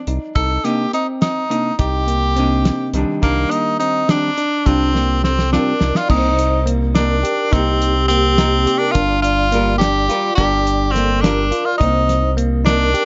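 An edgy, forceful tenor saxophone leads this brooding, driving progressive instrumental in 5/8 at 210 BPM (eighths) in C minor, up front over bell-like tine electric piano arpeggios, a round, deep analog bass, a damped 70s drum kit with a fat snare and tight kick, and a dark, clean hollow-body jazz guitar accompanying through chords such as Cm9, Gm7 and Cm7. A mellow vibraphone with soft mallets and fast motor vibrato joins at 5.2 seconds as a background second line, during a drum fill that runs from 4.9 seconds into a new section at 6.1 seconds, all in light small-room reverb.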